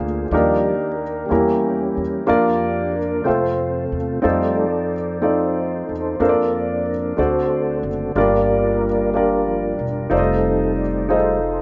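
Uplifting and jubilant, this slow gospel piece, cut from a longer work, moves in a straight 6/8 at 61 BPM in dotted quarters. A soft, flute-like tonewheel organ with key click and third-harmonic percussion takes the solo for the full 11.6 seconds, its sustained chords colored by a slow rotary speaker and chorus vibrato. An intimate, up-front concert grand with deep bass and audible action noise provides accompaniment, while a woody, dark pizzicato upright bass anchors a progression from Ebmaj7 through Bb/F, F7, D7 and Gm7, all in a rough home demo mix with light reverb and a dulled top end.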